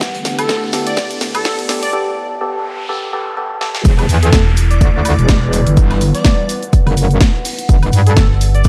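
This swaggering, aggressive bass house build-up opens on a punchy, up-front electronic kick and a house kit with a cracking snare, cabasa, hi-hat and woodblock, shadowed by a very quiet, gritty garage kit of hi-hat, shaker and snare. Beneath them, a resonant sawtooth pad and a lo-fi, nostalgic tape-like pad sit in the background with sidechain pumping, while a riser, noise sweep and downlifter fill the build and its break. An airy, dreamy lead with chorus and delay enters almost at once, and a hollow, organ-like stab plays through a filter sweep until the drop at 3.9 seconds, where a distorted, metallic wobble bass arrives, punctuated by brief overdriven digital FM bass notes in a dark mix with light ambience.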